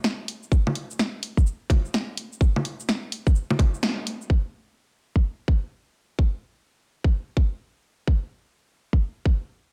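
Melancholic and ghostly, this future garage fragment moves at 127 BPM in 4/4 with a 63% swing on the sixteenths, its garage drum kit of bongos, hi-hat, shaker and a cracking snare sitting up front through low-pass filtering and small room reverb until 4.3 seconds. A tight, layered electronic kick enters at 0.5 seconds and carries on until 9.4 seconds after the kit drops out, with a band accent at 3.8 seconds arriving just before the second section begins at 4.3 seconds. Light reverb and digital ambience surround a dense, heavily limited master with a cassette-tape hue.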